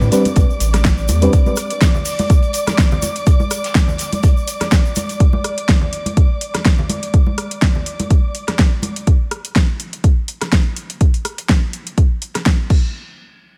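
This moody, hypnotic deep house fragment opens on a soft, round FM electric piano stab on an Am11 chord, chorused, pumping and trailed by tape echo, over a nasal, round analog bass and a barely audible downlifter, all gone by 1.3 s. Dark, woody studio violins bowed sul tasto with vibrato hold a smooth pumping texture until 9.1 s, joined by ringing, close congas and a grainy tube shaker in the background, the shaker and a very quiet soul kit with a rolled-off top stopping at 5.2 s. Just after the start, a deep, tape-warm electronic kick arrives up front, and a layered deep house kit with a fat snare, metallic hats, rim click and crash carries on with it to the end of this room-tinged cut.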